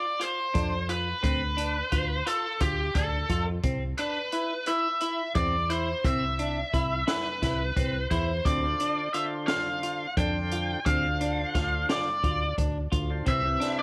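Progressive instrumental band music in 7/8 with an intricate, brooding mood, cut from a longer piece and moving between Dm, Cmaj7 and Dm7 chords. A biting, overdriven lead guitar carries the melody up front over twangy, lo-fi arpeggios from an electric guitar through a small old amp, while a woody, growly fretless bass and an open jazz kit with a high-tuned snare and boomy kick hold down the straight feel. At 8.5 seconds a thick tonewheel organ joins with key click and a slow rotary speaker, and the band sits in a small room with light reverb.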